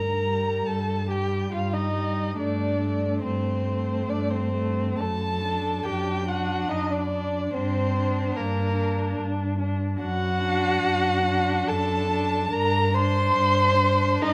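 A rubato 3/4 pulse at 71 BPM carries this elegiac, melancholic slow movement in G minor, a classical string quartet excerpt with every player con sordino, where a distant first violin sings the melody with vibrato, a close, up-front second violin shapes the second line, a soft-attacked viola with portamento slips in at 0.2 s with veiled accompaniment, and an up-front cello holds a dark bass with light vibrato, all heard through close, detailed microphones and moderate recital-hall reverb.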